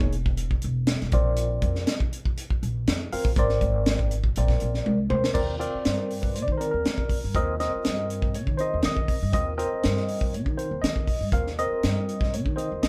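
A tine electric piano, upright bass and tight funk drum kit start together in this short cut from a longer electric jazz fusion piece, with a soaring, slick mood in a straight four-beat feel. The electric piano carries the accompaniment with a clean, up-front tone heard through its built-in speakers, colored by a phaser, moving through chords from an opening Emaj7 to Bbadd9 and Abadd9. The pizzicato upright bass sounds woody and thumpy with steel-string bite, reaching down to deep low notes. The acoustic drum kit is natural and close, with a high-tuned snare, tight kick, hi-hat, toms and crash cymbal, and it sits a touch louder than the other two parts. A drum fill at 4.9 s leads into a new section at 5.4 s, where the harmony opens onto an Ebmaj9. The band sounds like it is playing live in one small room, with light reverb around the ensemble.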